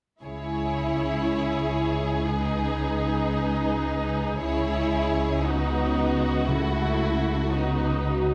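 A moderate scoring-stage reverb gives this cinematic passage, cut from a longer piece, a lush, spacious sound; it sits in C# minor at 115 BPM in a straight 4/4. The violins carry the melody with focused, vibrato-laden bowing, while a second violin line adds a soft-attacked, expressive layer and the violas fill in the accompaniment with portamento. Cellos and double basses anchor the bass on a steady C#, the basses sitting up front with a rich tone. A mellow French horn section holds sustained chords in the background from 0.3 seconds, and very quiet timpani played with medium mallets sound from 6.5 to 7.2 seconds. The harmony moves from C#m through G#m/C#, B/C# and F#m7/C#, all over a C# bass, lending the music a swashbuckling, adventurous air.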